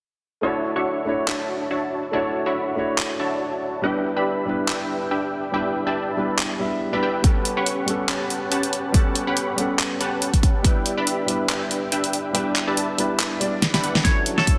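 A half-time future bass groove at 141 BPM swings its 16ths, with an up-front pop kit of fat snare, handclaps and warm hats entering at 1.3 s and a punchy electronic kick joining at 7.2 s. A detuned sawtooth supersaw stab riff, sidechain-pumped, filtered and delayed, rides over a dark, mellow grand piano that also pumps beneath it through Dmaj9, G6, A13 and Em7 in D major, all in a euphoric, lush mood set in a wet hall reverb and a dense, heavily limited master. Near the end a very quiet riser enters, and a bright, twangy, chorused electric guitar appears briefly at 14.0 s as this fragment of a longer piece returns to Dmaj9.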